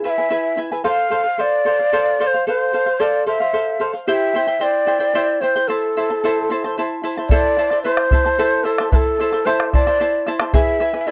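A fingerpicked charango with shimmering double strings opens this festive, earthy Andean folk excerpt in A minor at 74 BPM in a straight 6/8, joined almost at once by a breathy, hollow large quena carrying the tongued, vibrato-laden melody up front, before a deep, dark bombo enters at 7.3 seconds in this dry, close 1970s-style studio sound with light reverb.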